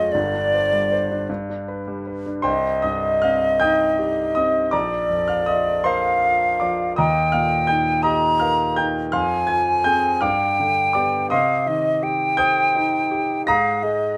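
A light reverb frames this short, bright passage, cut from a longer romantic classical duo in 6/8 with free, rubato timing. A silver concert flute carries the melody throughout, its airy, metallic tone shaped by vibrato and soft attacks, sitting up front with lifted highs. The grand piano accompanies from start to finish, brilliant and polished, reaching from deep bass up into the high treble. After an opening suspended chord settles onto G, the harmony moves from C minor through Bb, Eb, F minor and G7 before returning to C minor near 11.3 seconds. The mood is elegiac and yearning, the flute's expressive line singing over the piano's present, bright support.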